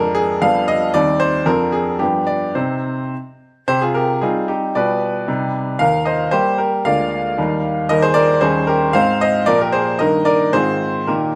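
Close, detailed microphones place a bright baby grand piano up front, with a moderate stone-room reverb adding a natural sense of space around its long sustain. This is a playful, graceful classical-period sonatina, cut from a longer piece and played solo in 2/4 at around 106 to 116 BPM with a flexible, rubato feel. The piano's brilliant tone spans from deep bass notes up into the treble, moving through dominant and minor harmonies in C minor. At 3.7 seconds the opening phrase begins again. Around 7.9 seconds the music turns to E-flat major, passing through Ab and Fm7 chords before the passage ends at 11.4 seconds.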